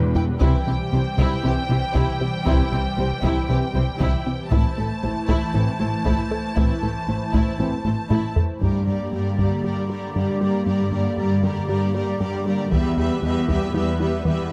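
A straight 4/4 pulse at 117 BPM drives this brooding, tense hybrid orchestral and electronic film cue in G dorian, cut from a longer piece, with heavy-stick solo taiko drums opening on a fill and playing until 9.6 seconds before a brief return, while a plucky, punchy analog bass riff with a ring-modulated, wave-folded edge and a hollow, flute-like pad with ensemble chorus sit underneath. Lush bowed cellos and woody double basses anchor the low end, a smooth violin melody floats high over a second violin line, dark violas fill the middle, and a mellow French horn section holds chords in the background until 7.8 seconds. The chords move from C to Am, then darken to Gm and Em after a second drum fill, all captured with close, detailed microphones and light reverb.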